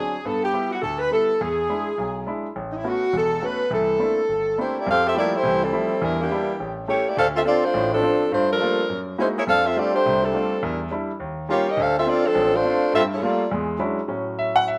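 Jazz at a brisk 208 BPM with a swung feel, brassy and joyful, settling into F major at 4.9 s in this fragment cut from a longer piece. A dark saxophone section carries the melody up front with light vibrato and a smooth top until 13.7 s, while a clear, polished concert grand piano accompanies with deep bass and a present sound through 14.8 s. A moderate echo-chamber reverb surrounds the playing as the harmony moves through rich changes such as Fmaj9, Em7b5, Gb13 and Eb9 before landing on A6.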